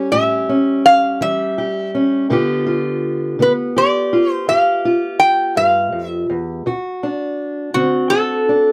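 Laid-back and soulful, this short excerpt of acoustic country blues in a slow 12/8 pairs a metallic, nasal metal-body resonator slide guitar carrying the melody with fingerpicks against a dark, boxy parlour steel-string acoustic guitar fingerpicking the accompaniment, both up front in a dry, close 1970s-style studio sound with light reverb as the chords move from A7 to G7 at 2.3 seconds and D7 at 6.7 seconds.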